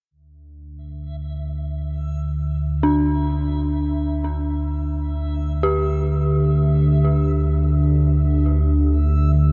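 An up-front analog drone anchors this ominous, cavernous piece of dark ambient drone in free time, its detuned sawtooth and pulse-wave tones evolving through pulse-width modulation, a moving notch and chorus as it holds a Dsus2 from 0.6 seconds. A reversed, granular texture of bright triangle tones fades in and swells softly in the background from 1.1 seconds, carrying its own reverb. From 2.8 seconds an eerie, inharmonic FM synth bell plays decaying arpeggios through chorus and delay, all set in light reverb.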